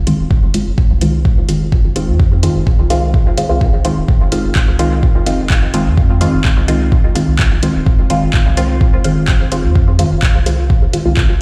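Heard through a big sound system in a bare stone room, this meditative, nocturnal dub techno excerpt in F minor moves at 127 BPM on a single Fm7 chord, with an up-front, deep, layered electronic kick, a round, soft sub bass of triangle and square waves, and muted, detuned sawtooth chord stabs coloured by chorus, phaser and dub echo, both bass and stabs pumping under sidechain, while a filter sweep runs across the stabs for the full 11.4 seconds and a quiet analog rhythm box adds overdriven handclaps and metallic hi-hats trailing their own dub echo.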